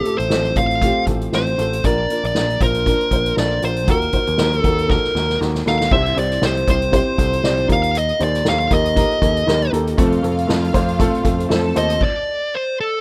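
Piano-driven pop at 118 BPM in 4/4 with a light swing on the sixteenths, this anthemic, warm excerpt is cut from a longer piece and carries the loose feel of a rough home demo mix in a studio room. A fuzz lead guitar carries the melody up front, its picked, compressed tone dark and distorted. Beneath it, a worn, woody upright piano with a slightly detuned, boxy character and short sustain supplies the accompaniment, joined by a picked electric bass that sounds direct and amped. A distant, roomy drum kit played with soft mallets adds a punchy kick, a medium-tuned snare, hi-hat and crash, with a drum fill leading into the second section at 5.9 seconds. The chords move from F over A through Bb and Ebm, then to C and Eb, arriving on F at 10.0 seconds, where a lush bowed violin section enters with a smooth, vibrato-rich second line before the band stops at 12.0 seconds and the guitar continues alone to the end.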